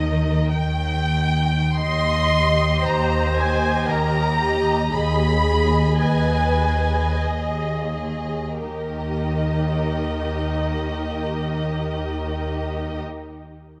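A string orchestra opens together in this serene, lyrical classical fragment of a longer romantic movement in 3/4 with a rubato feel: an up-front violin melody sings with vibrato and portamento over a soft-edged second violin line, a smooth, lightly vibrato viola accompaniment, lush cellos and woody double basses, all bowed and bathed in a wet concert-hall reverb as the pace slows through the first 8.6 seconds.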